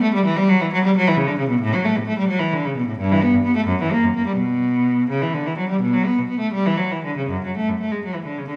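A classical, baroque-style suite movement for unaccompanied cello, this introspective and solemn fragment in B minor moves in a rubato 12/8 at around 77-89 BPM in dotted quarters, with one bowed cello, rich, smooth and even with vibrato, sitting up front between F#2 and B3 and ringing into a wet recital-hall reverb over a small-room ambience.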